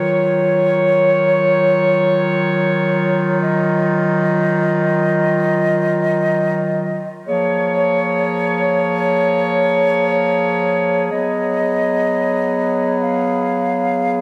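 Floating in free time with an unmeasured pulse, this short hip hop fragment, cut from a longer piece, feels ethereal and melancholic. A mellow woodwind section carries the whole passage by itself, from 0.0 to 14.2 seconds, playing in a classical style as an ensemble that ranges from Eb3 up to F5. The section sits up front yet sounds roomy and distant, with a light vibrato and a tape echo trailing its phrases. The harmony rests in Eb minor, tuned slightly sharp to A4 = 441 Hz, moving from Ebm9 to Bbm7 at 7.3 seconds and then to Abm7. A huge ambient reverb with a 4.2-second decay surrounds the players, giving the passage a hazy, suspended atmosphere.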